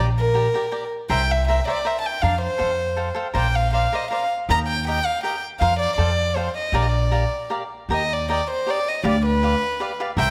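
A solo violin, airy and floating with a soft sul tasto attack, carries the melody up front from the very first moment, together with crisp picked cavaquinho and a woody pizzicato upright bass on steel strings in this proud, festive mariachi fragment of Mexican folk music, moving with a rubato waltz-time sway through a moderate recital hall reverb for its 10.3 seconds.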